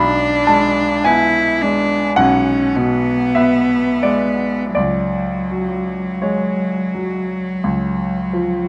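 Closely miked with a detailed, lightly reverberant sound, this short romantic classical excerpt for cello and grand piano unfolds at a slow, rubato 40-54 BPM in 4/4, its melancholic, yearning mood carried by a focused, bowed cello melody with vibrato, set up front alongside a clear, present grand piano accompaniment spanning B1 to B5, as the harmony moves from G#dim/B through C#sus4 to a C# chord at 7.6 seconds.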